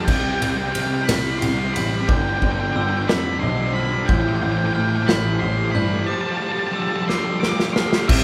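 Euphoric and hopeful, this post-rock fragment in 6/8 builds steadily as a fuzzed octave lead guitar carries the melody over a dark, double-tracked overdriven guitar riff, a natural-sounding baby grand piano playing the bass line, and a loose indie drum kit with a punchy kick up front, while a bell-like glockenspiel rings out arpeggios in the background and a deep, warbling ambient pad with chorus holds sustained chords beneath, the whole set in a spacious church-like hall until a drum fill arrives at 7.1 seconds.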